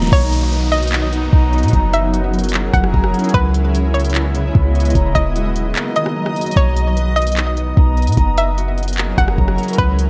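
A deep, boomy 808-style bass sits up front in this hazy, ethereal cloud-rap excerpt at 149 BPM in a half-time 4/4 feel, rooted in a Bmaj7, F#7, C#m7 and D#m progression. A soft-kicked R&B kit with a fat snare, handclaps, rim clicks and smooth hats carries vintage 12-bit grit, while a hollow, nasal square-wave pluck with chorus and digital delay carries the melody over a blurred, evolving granular pad that pumps under the beat. A ringing, fingerpicked concert harp adds delayed arpeggios, an electronic downlifter falls away between 0.1 and 3.3 seconds, and a brief break arrives at 5.8 seconds, all within a light reverb.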